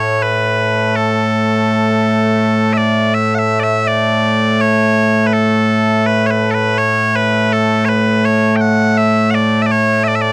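A dry, close 1970s-style studio sound with light reverb places the loud bagpipes up front, their bright, piercing tone held continuous as they play solo from 0.0 to 10.3 seconds. This short cut from a longer piece of Scottish traditional pipe music moves in a straight-feeling 3/4, with a proud, ceremonial mood. Its opening phrase is stated and then repeated from 3.1 seconds.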